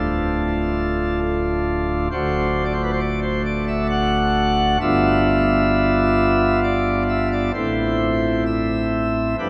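In a flexible triple metre that stretches and relaxes with rubato, this short classical chorale for solo pipe organ unfolds in a serene, reverent mood, cut from a longer piece. The organ sits up front with light, sparkling flute stops in a romantic voicing, spanning from deep bass notes up into a bright treble. A cathedral reverb with a long tail of about 6.3 seconds surrounds the playing, letting each chord hang in the air.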